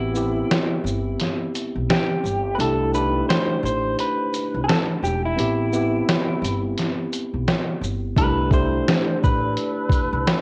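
A slightly broken-up electric guitar through a small old amp carries the melody up front, its fingered lines softened by spring reverb and a tape haze, in this mellow, nostalgic lo-fi hip hop excerpt at 86 BPM with a swung 4/4 feel. A worn, slightly out-of-tune tine electric piano with light overdrive plays chords alternating between Am7 and C69. A woody pizzicato upright bass and a muffled, compressed sampler-style drum kit of thumpy kick, medium-tuned snare, hi-hat and shaker support it, with the drums entering at 0.2 seconds, before a dark, detuned, warbling pad drifts in quietly in the background at 8.8 seconds.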